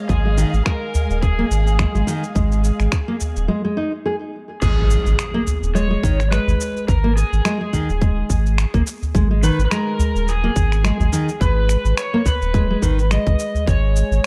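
Expressive bowed studio strings with vibrato and portamento open this hypnotic organic downtempo excerpt at 106 BPM in G# dorian, pumping as they sustain before dropping out at 3.5 seconds and briefly returning at the close. An up-front, full-bodied nylon-string guitar plays fingerpicked arpeggios beneath an overdriven electric slide guitar melody, both trailed by digital delay. A round sine sub bass, a tight electronic kick, a gritty overdriven sampler-style kit of crash, finger snaps and shaker, and a deep udu carry a swung groove, while after a short break an electronic impact sounds in the background from 4.6 seconds as the harmony settles on G# minor, all under light reverb in a dark, warm production.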